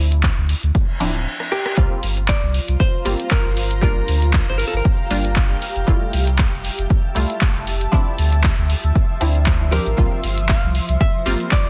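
This soulful, relaxed deep house excerpt opens at 117 BPM in 4/4 with a light swing on the sixteenths, as a dark, clean archtop guitar picks a delayed melody over muted, detuned dub chord stabs treated with phaser, chorus and delay, all riding on a round sine sub bass that pumps to the sidechain. A punchy, tape-warm electronic kick sits up front with a layered house kit of handclaps, hi-hat and rim click, while a reverse cymbal rises through a short break and drum fill, with a band accent striking at 1.6 seconds. The drop arrives at 1.8 seconds, and the guitar falls silent at 4.9 seconds before returning at 9.7 seconds. From 2.6 seconds a bright, cloudy granular pad drifts in with slow attack and its own reverb. The harmony moves through Dm9, C7sus4, Gm7 and Fmaj9 before cycling back, and the mix is dry, dense and heavily limited, with the kick and sub bass dominating.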